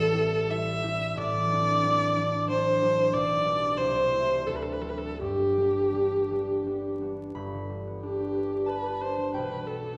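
Romantic classical music for viola and harp, this short passage cut from a longer piece moves in an elegiac, solemn mood at around 80-94 BPM in 3/4, with a flexible rubato feel in G major. A single bowed viola carries the melody from start to finish, its clear, focused tone shaded with vibrato and placed up front. Beneath it, a concert harp fingerpicks a ringing, acoustic accompaniment across a broad span from G1 to B5, also close to the listener though set lower than the viola. The harmony drifts from Am7 through D7 before settling on G at 5.2 seconds, then turns to G/B near the close at 9.3 seconds. A wet recital hall reverb places the duo further back in the room, and a vinyl crackle lends the sound an aged patina.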